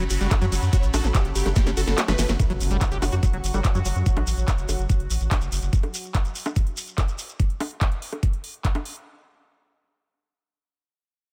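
Psychedelic trance at 144 BPM in F# phrygian, intense and driving, cut from a longer piece that opens straight on a drop. A knocking, tape-warm electronic kick sits up front with a round, deep analog bass, while a drum and bass kit adds a cracking snare, metallic hats, ride, handclaps and bongos, joined by a grainy, close shekere. Above them a huge, detuned supersaw carries the melody through a phaser and tape echo until 2.3 seconds, alongside a squelchy acid bass riff with chorus, dub echo and a cassette tint, a bubbling stepped-filter texture holding sustained chords, and a soft, breathy pad in the background, all four synth layers pumping against the kick. A drum fill closes the opening passage, the kick dropping out briefly before returning at 2.4 seconds. There, a filter sweep runs over the acid bass, a very quiet impact sounds, and an analog synth pad fades out, while kick, drums, shekere, the round bass and the bubbling texture drive on in a digital ambience.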